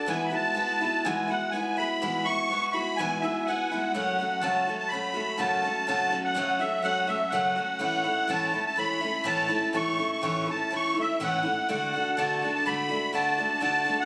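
Warm and nostalgic, this short rock cut moves at 124 BPM in a straight 4/4, lifted from a longer piece. A musette accordion carries the melody high in its range, its reedy, airy voice carrying the wavering shimmer of wet musette tuning and trailed by an analog delay. Beneath it, a picked twelve-string acoustic guitar supplies the accompaniment with bright, fresh strings, its octave-doubled sound ringing out from deep bass notes up into the middle register. Both parts sit up front and play together from start to finish, moving from an opening Eadd9 at 0.1 seconds into a second section at 3.9 seconds that steps through F#m, A and D. The sound has the feel of a phone held up in a moderately live room, with club reverb and compression giving it a close, slightly squeezed character.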